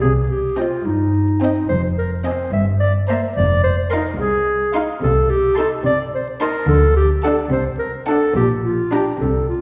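A warm, up-front solo clarinet sings a second line in this playful, whimsical film cue at 72 BPM in 6/8, its magical, sneaky air carried over rich bowed double basses and lush, focused cellos, with viola accompaniment and two violin sections, one dark and woody carrying the melody, one expressive, joining at 0.6 s in the background, settling into G minor from 5.0 s and all set back in a wet scoring-stage reverb with vinyl crackle, cut from a longer piece.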